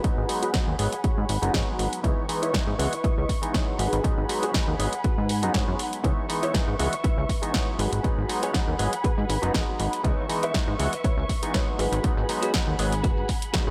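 A punchy, tape-warm electronic kick sits up front in this groovy, sensual filtered disco house excerpt, alongside a large-room analog drum machine's snare and pumping hi-hats, very quiet vintage maracas, a plucky, funky sawtooth bass, a stringy overdriven clav with phaser, a bright, clean direct-recorded guitar riff with ensemble chorus that breaks into a fill at 9.0 seconds, and a dark, woody, lush violin section holding sustained chords, while a filter sweep runs through the whole passage over alternating G#m7 and C#m7 chords in light digital ambience.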